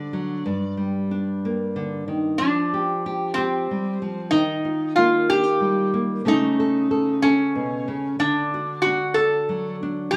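Set in a small room, with a moderate large-studio reverb around it, this melancholic, reflective passage of acoustic folk comes from a longer piece and moves at 93 BPM in a straight 3/4. A metal-body resonator guitar carries the melody up front, its slide tone bright, metallic and nasal, shaped by fingerpicks and a steel bar. A fingerpicked nylon-string guitar supplies the accompaniment, also up front, with a warm classical tone and audible finger squeak. The resonator takes a featured solo over the opening 2.4 seconds before the second section begins. The harmony moves from G minor through Fsus2 and Ebadd9 to A/C# and settles on D.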